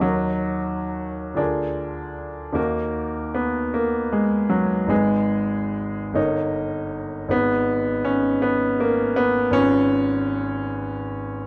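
A moderate studio reverb surrounds the playing, and the overall production is dark and warm, with its top end rolled off. This is a short cut from a longer romantic character piece for solo piano in E-flat minor, hopeful and passionate in mood, moving in a rubato 6/8 at roughly 42-56 BPM counted in dotted quarters. The baby grand sits up front with a brilliant, natural tone and long sustain, ranging from G1 up to E-flat5 across the whole 11.5 seconds. The harmony opens on E-flat minor, passes through B-flat seventh over D, and returns home by 2.6 seconds before shifting to A-flat minor at 4.9 seconds. An E-flat seventh over G leads back to A-flat minor, and a C-sharp seventh over G-sharp arrives at 9.5 seconds.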